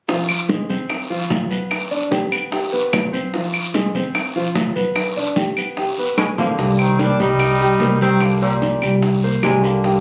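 This phone recording, made in the room, carries a club-like reverb and compression. It is a driving, sultry Afro-Cuban jazz passage in C minor at 148 BPM, cut from a longer piece. A natural, up-front baby grand piano plays accompaniment over Fm and G chords from the start, joined by low-tuned, round bongos played with hard hands, soft-handed congas in the background, a raspy guiro and woody claves. As a drum fill begins at 6.2 seconds, a tenor saxophone with scooped notes takes the melody from a distant, roomy position, while a buzzy, forceful trombone with a metal mute plays a second line beneath it. At 6.6 seconds the music moves to Cm9, with a thumpy pizzicato upright bass holding C2 and grainy, mellow maracas tucked behind the other percussion.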